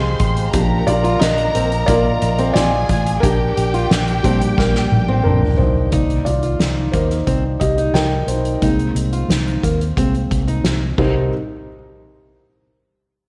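Dramatic and earnest piano-driven pop opens with a soft, intimate felt-muted upright piano carrying a solo with audible action noise, alongside a round, foam-muted electric bass and a lush, bowed violin section, soon joined by a punchy, up-front drum kit played with soft mallets and a dark fingerpicked steel-string acoustic guitar riff with finger squeak. The violin section leaves at 5.9 seconds after a drum fill from 4.6 seconds, all set in an echo-chamber reverb.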